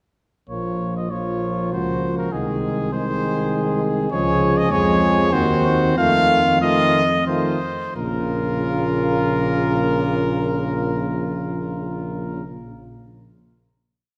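A clear trumpet sits up front with the melody in this grave, solemn classical piece for brass quintet, a short and complete work in 3/4 with a rubato feel. Behind it, a flugelhorn with a soft attack and a present French horn of warm tone stay in the background, moving in chords with the rhythm of the tune and holding sustained chords. A mellow euphonium with vibrato fills the middle, while the tuba, with light vibrato and a smooth top, gives a sustained bass with passing notes. All five play together from 0.5 seconds, and the pace slows from 3.2 seconds until the phrase settles at 8.0 seconds onto a long final chord. A wet church reverb gives the ensemble a deep, resonant space around its sombre harmonies.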